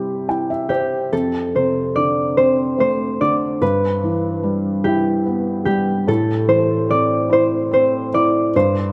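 Sleepy and tender, this children's lullaby moves at a slow 48 BPM in 6/8, with a thumb-plucked concert harp carrying a mellow, ringing melody up front while a felt-muted upright piano, intimate and boxy with audible action noise, opens with a brief fill before accompanying through C, F6, Em/G and Am chords, the whole fragment cut from a longer piece and given a dark production with moderate concert hall reverb.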